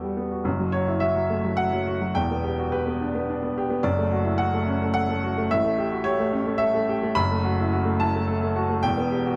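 A clear, woody upright piano plays alone and up front with long sustain in this intimate, hopeful neoclassical minimalist passage, moving in a rubato 3/4 at 108 BPM through F#m7, Em7, Dmaj7/F#, A7 and back to F#m7 before resting on Em at 8.8 seconds, all set in light reverb and a dark production.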